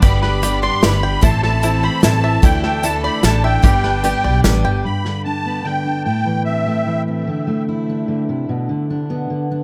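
Uplifting and anthemic, this indie folk passage in 3/4 opens with a reedy, shimmering musette accordion carrying the melody over an up-front unplugged drum kit played with bundle sticks, a woody pizzicato upright bass, a twangy banjo picking arpeggios, a picked twelve-string acoustic guitar set in the background, a faint, brilliant upright piano and very quiet sustained chords from a studio string section with light vibrato. Around 4.8 seconds that band drops away, and a dark, fingerpicked steel-string guitar takes over the accompaniment beneath the accordion, which stops at 7.0 seconds. The mix is echo-heavy, with tape echo on the accordion, both guitars and the drums, all of it placed in a small room with light reverb.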